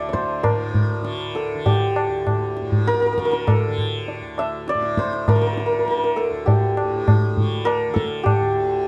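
A hammered santur and a softly plucked, buzzing tanpura drone open this short passage of Hindustani classical music together, with the tabla joining at 0.1 seconds. The mood is meditative and radiant, set in a straight 4/4 at around 100 BPM, and the pace gradually speeds up throughout. Up front, the santur carries the melody between C4 and E5 with a shimmering, warm tone, while the bright tanpura sustains its drone low beneath it, from D2 to D3, sitting further back. The low-tuned tabla is also up front, its ringing strokes carrying a small-room quality and falling silent at 8.5 seconds. Close, detailed microphones and light reverb give the sound an intimate clarity, and the passage is cut from a longer piece.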